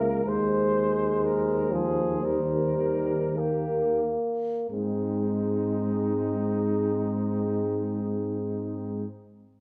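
A classical, hymn-like passage for brass band in Ab major, lyrical and tender, moving at a slow 43-66 BPM in 4/4 with a rubato feel that slows down over the first 4.7 seconds, cut from a longer piece. The flugelhorn carries the melody with a warm vibrato, sounding distant and roomy, while a mellow French horn section sits in the background on a second line. Up front, a clear euphonium and a tuba with vibrato, a soft attack and a smooth top anchor the accompaniment and bass, joined by a very quiet trombone played with light vibrato. The harmony settles from Ab/Eb to Eb and arrives on Ab at 4.7 seconds, where the second section begins. A moderate recital hall reverb gives the ensemble a gentle sense of space around its distant voices.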